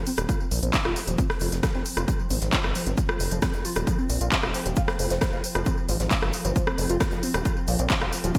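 A screaming, guitar-like synth lead riffs over a nasal, sawtooth-edged driven bass from the start of this intense, relentless peak-time techno cut in F minor at 134 BPM, with a filter sweep across the lead's phaser, chorus, tape and delay. A heavy overdriven electronic kick lands at 0.3 s atop a techno kit of handclaps, smooth hats, rim click and tambourine pumping with gated reverb, while a very quiet gated 80s acoustic kit adds snare, hi-hat and shaker. An eerie FM drone enters at 0.5 s, mellow and metallic in the background, all set in a lush hall with bright 1980s-style digital polish.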